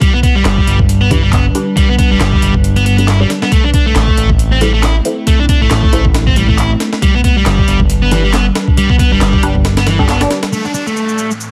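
Breakbeat excerpt with an energetic, funky swing, where a gritty, pitched-up sampler drum kit with a thumpy kick and a fat, detuned sawtooth bass sit up front beside an overdriven electric guitar riff through tube saturation and tape echo, while electronic handclaps and shaker, a muted dub chord stab with a filter sweep, phaser and cassette-tape character, and a warbling, nostalgic pad with sidechain pumping sit lower in the mix, the pad in the background, over G and Am chords, before a downlifter closes out the final second from 10.5 s in a dense, heavily limited master dusted with vinyl crackle.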